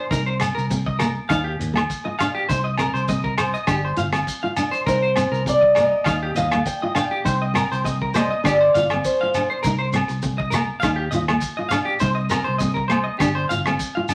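Danceable and warm, this highlife guitar band clip has a clean electric guitar picking up-front arpeggios over a dark, classical-toned nylon-string guitar, a round fingered electric bass, and a damped 70s drum kit with a tight kick, hi-hat and rim click. A grainy shekere and ringing agogo bells fill out the percussion as the chords cycle through Cm7, Ebadd9 and G7sus4. From 4.9 to 9.5 seconds, a boxy fingerpicked acoustic archtop guitar steps forward with a melody, finger squeaks audible, all framed by wet studio reverb and a layer of vinyl crackle.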